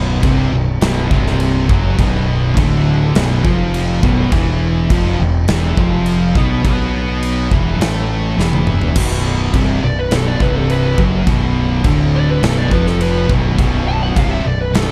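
This stoner and doom metal excerpt moves at a straight, hypnotic 4/4 with a heavy, dark and warm studio sound. A bright, double-tracked high-gain guitar and two thick fuzz guitars, one dark and in the background, the other very quiet, play the riff together from the start over Bm and E5. Beneath them a growly, punchy fingered bass with overdrive sits up front, and a big acoustic rock kit with a boomy kick, medium-tuned snare, bright cymbals and toms enters at 0.2 seconds in a big room. A drum fill at 8.4 seconds leads back to Bm, where a compressed fuzz lead guitar with distortion and delay takes a solo in a higher register from 9.8 seconds, riding over the riff until the cut.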